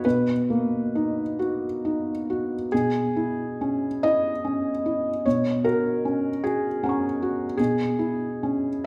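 In a rubato 6/8 lilt, this hopeful, peaceful neoclassical minimalist fragment features a solo felt-muted upright piano tuned to A4 = 438 Hz, mellow and intimate with audible action noise, sitting up front in a moderate recital-hall reverb as its harmony moves from Bmaj7 to C#m/B at 2.7 seconds and on through F#add9/B and E6/B.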